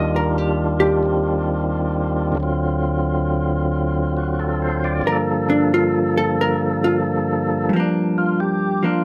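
Swung eighth notes in 4/4 carry this bluesy, soulful jazz fragment, where a full, percussive tonewheel organ with key click and a slow rotary speaker sings the melody up front while a dark, compressed hollow-body electric guitar takes a clean, picked solo from 0.0 to 7.7 seconds over Ebmaj7, D7#9 and Gm7, captured in close, detailed sound with light reverb.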